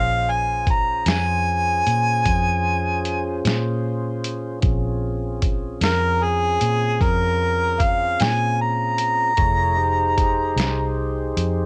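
A mournful, soulful slow blues in 12/8 opens with an overdriven harmonica, a tonewheel organ and a muted electric bass sounding together, with a lo-fi drum kit joining at 0.7 seconds. The harmonica plays a jazz-style solo up front, its smooth-topped tone full of vibrato and scooped notes, and it steps away at 10.9 seconds. Beneath it, the organ holds clear, clean sustained chords through a slow rotary speaker, moving from Bbm7 to Fm7 at 9.4 seconds. The foam-muted bass sits forward with a dark, round, punchy amped sound. The sampler-style drums are compressed, pitched down and muffled, with a thumpy kick, a medium-tuned snare and hi-hat. Cassette-tape colouring on the harmonica, organ and drums, plus light reverb and digital ambience, gives this home-recorded excerpt a worn, intimate character.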